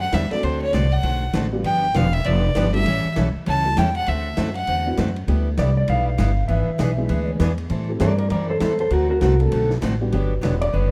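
A lightly reverberant studio sound frames this down-home, swinging slice of western swing country, cut from a longer piece and moving at a brisk, lilting swing. A clear, intense fiddle with light vibrato carries the melody up front for the first 4.9 seconds. Then a clean, compressed lap steel guitar enters with a second line from 5.6 seconds, its slide lines shaped by volume swells. Underneath, a bright, full-bodied picked acoustic guitar and a mellow, boxy upright piano tucked in the background fill out a chord progression rich in sevenths. A woody, thumpy upright bass with gut strings sits prominently in the mix. A vintage drum kit with a rolled-off top keeps time on hi-hat, ride cymbal and a medium-tuned snare.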